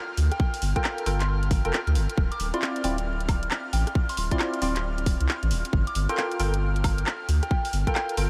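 Drenched in a huge, dreamy reverb with a layer of vinyl crackle, this short cut from a longer two-step UK garage track bounces along at 135 BPM with a skippy 16th-note swing over Gm9 and Dm9 chords. Up front, a tight, tape-warm electronic kick sits beside a deep, round dub sub bass, while a layered garage kit of handclaps, hi-hat, rim click and woodblock skips underneath. Hollow, organ-like stabs with analog chorus and ambient delay enter at 0.8 s, and in the background a pure FM bell melody with phaser and an airy, breathy pad with sampler grit and sidechain pumping float through the mix.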